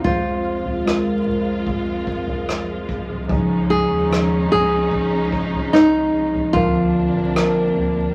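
This pop ballad excerpt moves at 74 BPM in F minor, its longing, heartbroken mood carried by a chord path from Fm to Dbadd9 to Bbadd9. Up front, a fingerpicked nylon-string guitar with fresh strings sings the melody in a classical manner. Beneath it, a worn, slightly out-of-tune tine electric piano plays the accompaniment through a phaser, while a lush symphonic string section holds sustained chords with expressive vibrato and portamento. A deep, full sine sub bass with an octave sits in the background, and a distant, roomy soft-mallet drum kit of punchy kick, rim click and toms plays until 7.9 seconds. Moderate studio reverb and a layer of vinyl crackle give the short passage an intimate, nostalgic patina.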